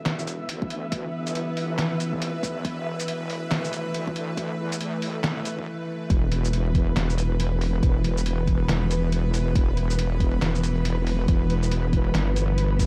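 A dark, warm digital ambience with a haze of vinyl crackle frames this brooding, cavernous deep dubstep excerpt in E minor, moving at 139 BPM in 4/4 with a half-time feel and a 61% swing on the sixteenths. From the opening, a string-like drone holds tense sustained chords on a single E5 harmony, its slow attack, vibrato, long release and built-in reverb hanging over a heavy wobble bass that sits up front, detuned and mellow, thickened by chorus. High above, a grainy, flickering granular texture stays in the background, its long release blurring into the space. A compressed, pitched-down trip hop sampler-style kit enters at 0.1 seconds with muffled handclaps, hi-hat, shaker and a medium-tuned snare in a small room, and a deep, layered electronic kick joins at 0.6 seconds. The first half works as a build-up with a brief break just before the drop lands at 6.1 seconds, where the bass, drone, texture and drums carry on together to the cut.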